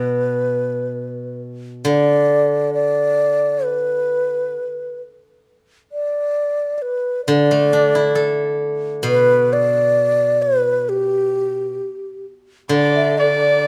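Close, detailed microphones and light reverb give this short excerpt of Chinese traditional chamber music an intimate, clear sound. It moves at an unhurried 67 BPM in 2/4 with a rubato feel, tuned to A4 = 435 Hz, and the mood is pastoral and graceful. A low bamboo xiao carries the melody from start to finish, its end-blown tone airy and soft in attack, with vibrato, placed up front. Beneath it, a steel-string zither played with fingerpicks supplies bright, silvery, ringing accompaniment, falling silent between 4.6 and 7.3 seconds before returning. In the closing second, from 12.7 seconds, a single erhu enters on a second line, its bowed tone warm and slightly boxy, shaded with vibrato and portamento.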